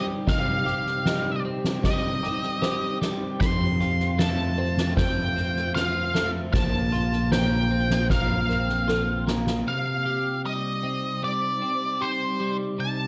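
A dark, fuzzy octave-fuzz lead guitar carries the melody up front over a chorused twelve-string electric guitar's picked arpeggios, a cloudy, detuned granular pad in the background, and a soft, muted felt-muted upright piano, with slapback echo on the lead, twelve-string and piano, in this melancholic, brooding post-rock excerpt at 77 BPM in C dorian. A soft-mallet drum kit with a fat snare and boomy kick joins at 0.3 seconds, and a growling, punchy overdriven fingered bass enters at 3.4 seconds as the chords move from Cm through F and Bbsus2. After a drum fill at 8.9 seconds, the drums, bass and piano drop out, leaving the guitars and pad to return to Cm in a dark, moderately reverberant large-studio sound.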